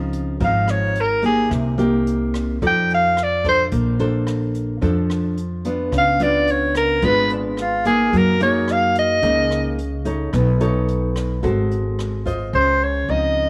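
A soprano saxophone carries the melody in this relaxed, breezy bossa nova, entering at 0.4 seconds and taking a jazz-style solo with a warm vibrato and a roomy, slightly distant tone, even while it sits up front. Beside it, a fingerpicked nylon-string guitar plays a classical-flavoured accompaniment, moving through rich chords such as Dbmaj9, Bbmaj9, Gb69 and Ab7b9 before settling back on Dbmaj9 at 12.5 seconds. An upright bass, plucked on gut strings, gives a woody, thumpy low end. A brushed jazz kit stays in the background with hi-hat, rim click and a boomy kick, stopping at 12.4 seconds. Light reverb and small-room ambience give this excerpt, cut from a longer piece, a natural feel.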